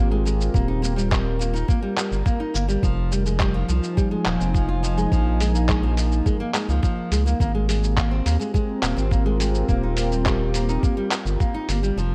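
Playful and pastoral, this short folktronica excerpt moves at 105 BPM in a straight 4/4, set in a dark production with light reverb. A smooth, detuned sawtooth pad holds slow-attack chords with chorus, while a nylon-string guitar, bright with fresh strings and audible finger squeak, fingerpicks classical-style arpeggios through a delay. Underneath, a round analog bass blends square and sine tones with wave-folding, sitting deep and up front with tube saturation and a fast attack. A compressed, pitched-down sampler-style kit of handclaps, hi-hat and shaker comes in at 0.3 seconds with a muffled, tape-warm character, joined at 0.5 seconds by a thumpy electronic kick that drops out at 12.0 seconds. The harmony cycles through Abadd9, Eb, Fmadd9 and Bbm7 before returning to Abadd9 and Eb.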